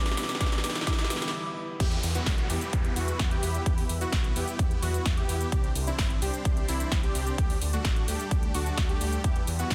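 Festival progressive house at 129 BPM in E minor, emotional and powerful, this snippet opens on a build-up where a bright piano, a glassy synth bell, a background riser and downlifter, and a drum fill from the big-room kit with metallic hats and punchy snare stack over a huge, compressed supersaw riff with sidechain pumping and tape echo, joined at 0.4 seconds by a punchy, up-front electronic kick. After a brief stop, the drop lands at 1.8 seconds with a thick detuned saw bass with chorus and a warbling, nasal unison lead playing arpeggios through cassette-tape colour. A lush pad with phaser and 12-bit grit sustains chords from Dsus4 to Em, Csus2 and back beneath a dense, heavily limited master.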